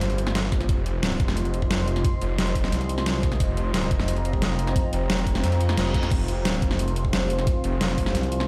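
A thick, detuned saw bass sits up front in this dark, technical drum and bass excerpt, its saturated, chorused unison tone pumping against the beat and giving the music a futuristic, aggressive edge. A growling FM bass cuts in briefly at 2.7 s and returns at the close, adding a snarling layer. The dubstep drum kit brings a deep, overdriven snare, bright hi-hats and crash cymbal in a small room, joined from 0.5 s by a knocking electronic kick. Behind them, a moody analog pad holds sustained chords with a slow attack, sub octave, chorus and phaser, while a warbling, lo-fi tape-like pad drifts in the background with its own reverb and a nostalgic haze. A reverse cymbal sweeps in softly at 5.6 s, and the whole mix rings as if played through a big sound system in a bare stone room.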